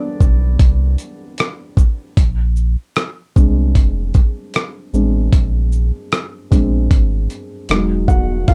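Cosy and dreamy, this lo-fi hip hop excerpt moves at 76 BPM in 4/4 with a lazy 16th-note swing, tuned slightly flat to A4 = 437 Hz, and drifts from Cmaj9 to Bb9 before settling on Emaj7. A dark, woody upright piano takes a solo from the opening moment, its intimate, vintage tone softened by cassette tape and a low-pass filter, with audible action noise and short sustain. From 0.2 seconds a round, sine-like sub bass and a gritty, compressed sampler-style kit with a thumpy kick, hi-hat, rim click and shaker sit up front in a dry, dusky mix.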